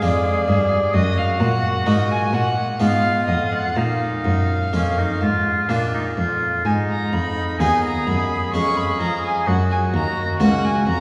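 A grave, introspective baroque-style sonata movement in Eb minor opens at once at 64 BPM in 3/4, with a nasal, gut-strung solo violin carrying the distant melody above a smooth-topped oboe second line, bright plucked harpsichord continuo and a rich, close bowed cello bass set up front, all bathed in a resonant church reverb as the harmony moves through Ebm, a Bbsus4 to Bb suspension and Abm toward Gb in this 11-second excerpt.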